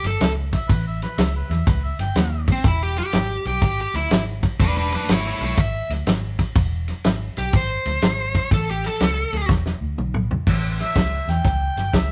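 Electric blues shuffle at 123 BPM in A mixolydian, rollicking and laid-back, with a band playing live together in one room under moderate reverb. A bright, overdriven lead guitar carries the melody up front until 9.5 seconds, over a dark, round, foam-muted fingered bass and a tight, mid-forward soul drum kit with a fat snare and rolled-off top. A clear, close-miked harmonica with light vibrato adds a brief second line at the start, then takes a solo from 10.8 seconds after a drum fill and the move to an A7 chord.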